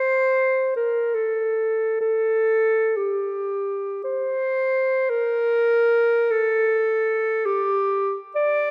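A moderate concert hall reverb, lingering for about 1.8 seconds, surrounds a single clarinet placed up front in this short classical passage cut from a longer piece. The clarinet plays unaccompanied, with a clear tone in a classical style, staying between G4 and D5 for the full 8.7 seconds. The mood is lonely and meditative, and the playing is free and expressive. The phrasing moves in 3/4 with a rubato feel, the tempo drifting between 50 and 81 BPM, and the tuning sits at A4 = 441 Hz. The opening phrase gives way to a new section at 5.1 seconds, which carries the solo line to the close.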